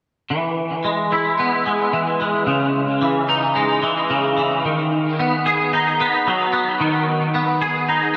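A dreamy, reverb-soaked mix fills a lush hall whose 2.1-second decay lets every note bloom and linger. This short rock excerpt, cut from a longer piece, moves at 111 BPM in a straight 4/4 in E major, with a cinematic, euphoric mood. A twangy electric guitar sits up front, playing clean, picked arpeggios between C#3 and G#4 from 0.3 to 8.2 seconds. Its bright, compressed tone is thickened by an ensemble chorus and trailed by a diffuse ambient delay that blurs the edges of each phrase. The harmony drifts from E to C#madd9 at 2.5 seconds and on to G#m7/D# at 4.6 seconds, giving the passage an open, yearning lift.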